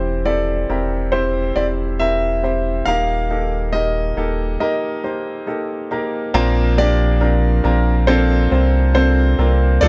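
Emotional and heartfelt, this pop ballad excerpt sets a smooth, vintage-toned concert grand piano melody over an intimate, woody upright piano accompaniment with audible action noise and a round, mellow sub bass sitting up front, all in light studio reverb, moving from C/E to Eb before a break at 4.6 seconds gives way to a new section on Bbadd9 at 6.3 seconds.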